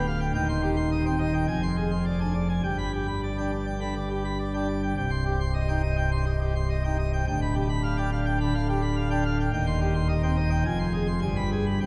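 Classical organ toccata, majestic and dramatic, in which a solo pipe organ on full plenum with mixtures rings out brilliant and up front, its baroque voicing spanning C1 to C6. The harmony circles a minor tonic through a half-diminished chord and a dominant seventh before landing on G at 11.2 seconds, as this fragment of a longer piece breaks off. A wet church reverb with a 3.5-second decay surrounds the sound, heard from further back in the room.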